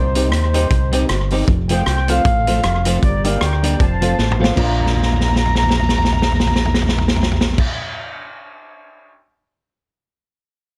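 A swung ska groove at 155 BPM in 4/4 and Bb major drives this upbeat, joyful clip, with a vintage drum kit up front (punchy kick, dark cymbals, rim clicks, snare and toms under slapback echo) and fills at 4.2 s and again from 4.8 s. A round, fingered electric bass sits forward beside the drums, while a clean, picked semi-hollow guitar and a worn, woody, slightly detuned upright piano playing short stabs sit in the background with plate reverb, the piano's action noise audible. A mellow, distant horn section carries the melody with light vibrato, slapback echo and plate reverb over chords moving from Cm through F and Gm to Bb, and the guitar lingers until 8.1 s while the kit carries on until 9.1 s.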